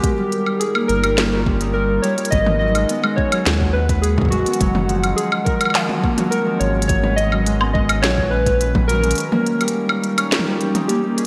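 A bright, 1980s-style digital production sits in a lush hall reverb, giving this glitchy, intricate IDM fragment a glossy sheen. At 105 BPM in a straight 4/4 around G# dorian, a warbling lo-fi synth carries the melody with a nostalgic, vintage square-and-saw tone, chorus and digital delay. Beneath it, a detuned, mellow tape-like pad holds sustained chords through D#7/G, G#m7 and F#maj7, while a ringing, fingerpicked Celtic harp adds delayed arpeggios. The up-front electronic drum kit brings a woody snare, crisp hats, toms and woodblock under gated reverb, joined by a deep electronic kick that drops out at 8.9 seconds. A round, dark analog bass enters at 0.9 seconds and sustains low notes until 9.1 seconds, anchoring this piece cut from a longer track.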